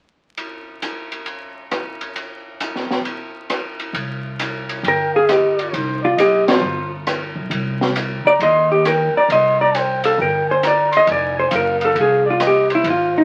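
Swinging and cool, this small-group swing and bop excerpt moves at 135 BPM in 4/4 with a strong swing feel, set in C minor. An open acoustic drum kit starts it alone in a small room, with dark cymbals on hi-hat and ride, rim clicks and a high-tuned snare. A woody pizzicato upright bass on steel strings joins at 3.9 seconds as the harmony settles on C minor, later shifting to F minor. Soon after, a clean, compressed hollow-body electric guitar takes the picked melody up front with a dusky tone, while a warm trumpet with light vibrato carries a second line above it in jazz style, and the band hits a shared accent at 6.4 seconds. The whole is bathed in wet studio reverb and heard through the crackle of a very old 78 rpm record.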